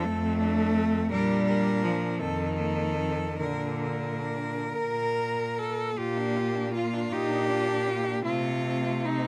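Three bowed cellos open together in this tender, serene classical excerpt, a lyrical ensemble piece in 6/8 with rubato. A rich melody cello sits up front, with a clear second line and an intense accompaniment beneath, all three singing with vibrato. A warm, focused bass cello, also up front, joins at 0.1 s. The melody and second line stay smooth and even, each part is a single player caught by close, detailed microphones in a dry space, and the music passes into a new section at 6.0 s.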